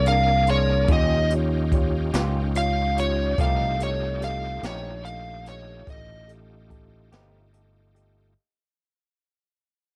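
Lightly reverberant and lo-fi with the grain of a home cassette recording, this rollicking yet laid-back slow blues in 12/8 is cut from a longer piece and fades out across its whole length. An overdriven slide guitar, played with fingerpicks and sitting up front, carries the solo melody until 6.3 s over a round, fingered electric bass and a brushed drum kit with a boomy kick in a small room, moving through Bb9, Eb9 and F9 chords. Behind them, a bright, shouting tonewheel organ holds sustained chords through a slow rotary speaker, a dark, mellow baby grand piano adds accompaniment, and a slightly broken-up electric guitar through a small old amp joins at 0.9 s with picked, tremolo-laced parts.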